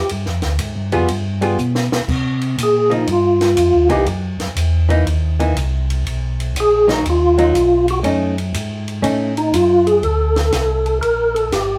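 A soft, flute-like tonewheel organ carries the melody of this swinging, greasy soul jazz organ trio excerpt, soloing from the start until 10.0 seconds with third-harmonic percussion, chorus vibrato and a slow rotary speaker, sitting up front in the mix. A second, mellower organ holds down the bass line with a round, clean tone, audible key click and its own slow rotary swirl. A compact cocktail drum kit swings the eighth notes in 4/4 with a dry, natural sound: dark cymbals, a high-tuned snare, a tight kick, hi-hat, ride and crash, plus a brief fill early on. A miked, amplified hollow-body archtop guitar comps from 0.9 to 9.3 seconds with a picked, compressed electric tone over jazzy changes such as G7b9, Cm7 and Bmaj7, before the harmony moves to a new section on Bb69 at 10.0 seconds. The group is heard from further back in a room with wet studio reverb.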